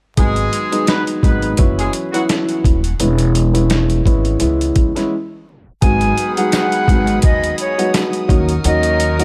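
Gritty, pitched-down sampler drums with a thumpy kick anchor this moody, dark boom-bap hip-hop excerpt, joined by a woody pizzicato upright bass, a mellow vintage upright piano with cassette-tape colour, and distant jazz-style horn stabs with tape echo, until a break at 5.1 s and a tape stop at 5.5 s give way at 5.8 s to a breathy, close-miked flute melody and soft bowed strings in the background, with a jingly tambourine from 6.5 s and vinyl crackle in a small-room ambience throughout.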